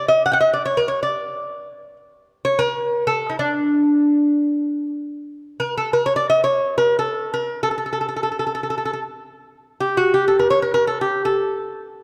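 A solo lute opens the recording, its bright, delicate double strings fingerpicked up front in free time, moving between D4 and G5 in the chahargah mode on D, tuned to A4 = 437 Hz. This Persian modal piece feels festive yet stately, its nylon strings with some octave doubling giving the plucked lines a fuller sound. Light reverb and a dark production surround the lute through this 12-second passage cut from a longer piece, with a repeat of the opening material beginning at 5.2 seconds.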